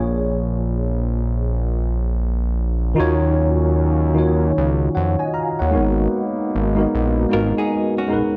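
Late-night and introspective, this brief R&B fragment from a longer piece settles into a gently swung sixteenth-note groove in 4/4. A worn, slightly out-of-tune tine electric piano sits up front with an ensemble chorus, carrying the chords from Bbm7 to Ebm9 at 3.0 seconds and on to Abm9, while a fat, saturated analog bass with a detuned sawtooth tone and a filter pluck holds the low end. At 3.0 seconds a trombone section enters behind them with tight, punchy stabs, its smooth top and light vibrato kept in the background. Near the close, at 7.3 seconds, a dark, compressed hollow-body jazz guitar adds a clean, fingered second line. Light reverb and a digital ambience give the sound a soft sense of space.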